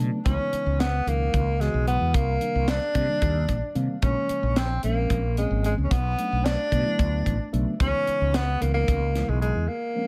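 Driving and intense, this electric jazz fusion passage moves in a brisk 7/8 at 222 BPM counted in eighths, with a straight feel. A dark, round fretless electric bass sits up front, while a tight funk drum kit with a high-tuned snare, tight kick and hi-hat sounds natural in a small room. The tenor saxophone carries the melody with vibrato and a soft attack, sounding roomy and somewhat distant yet still prominent, played in a jazz solo style. A reedy, clean electric piano supplies accompaniment through its built-in speakers, bathed in spring reverb, and adds fills at the start and around 3.2 and 7.0 seconds. The harmony shifts through Dbm9, Cm9, Bbm9 and Bm9 before returning to Dbm9, and the piano plays a brief break at 9.7 seconds alongside the saxophone as this cut from a longer piece closes in light small-room ambience.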